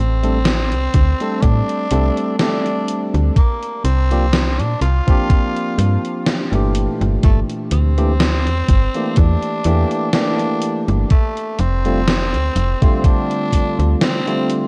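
A digital ambience surrounds this woozy, melancholic vaporwave excerpt in G dorian, drifting at 62 BPM with a light 16th-note swing over D7sus4, C9sus4, Gm69 and F69 chords. A raspy, growling tenor saxophone carries the jazz-styled solo melody with vibrato and tape echo, over a snappy, metallic FM slap-like bass with tube saturation and a barky, clean tine electric piano with subtle chorus and 12-bit sampler grit. A gated 80s drum machine supplies hi-hat and a gated-reverb snare, and an up-front, thumpy electronic kick enters at 0.9 seconds, both tape-warm and gritty from a vintage sampler.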